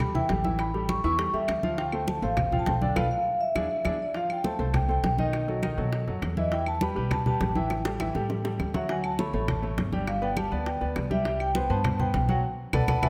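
Salsa at a fiery, driving 202 BPM in A minor, where a mellow, ringing vibraphone with soft mallets and fast motor vibrato carries the melody over a clear, present grand piano, a thumpy gut-string upright bass, bright hard-hand congas, round low-tuned bongos and woody claves in the background, all in a concert hall reverb, with band accents at 3.0 and 12.4 seconds and a drum fill at 7.7 seconds in this short cut from a longer piece.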